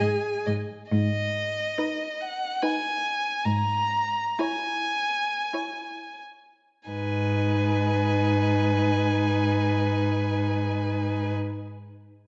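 Heard in a moderate recital hall with a dark, soft top end, this brief passage from a slow romantic string quartet movement in G# minor moves in a rubato 3/4 between 41 and 73 BPM, elegiac and solemn, slowing through its first 6.9 seconds before a new section begins. A rich, focused first violin sings the melody up front with vibrato, while a smooth, even second violin carries a line beneath it and an expressive viola adds bowed accompaniment with vibrato and portamento. Up front as well, the cello sustains a low G# bass with vibrato under the shift from G#m to C#m/G# and back.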